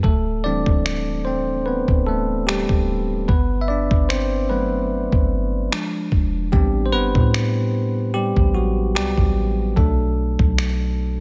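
Contemporary R&B at 74 BPM in A dorian with a moody, late-night feel and a light 16th-note swing, this short excerpt from a longer piece features a bell-like, clean tine electric piano soloing up front over a deep, round 808-style bass and a dusty, gritty sampler-style kit of finger snaps and thumpy kick, re-recorded in a large room, moving through D7sus4, Gmaj9, E7b9, Am11 and Bm7 with little reverb overall.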